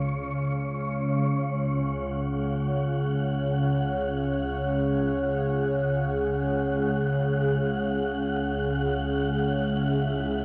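An organ-like drone and a breathy, wind-like tuned noise texture open this cavernous, ominous dark ambient excerpt in free time, joined at 1.2 seconds by a barely audible bronze metallophone shimmering with paired-tuning beats and at 2.3 seconds by a moody, full-bodied analog pad, all afloat in a huge reverb and the warbly pitch drift of worn cassette tape.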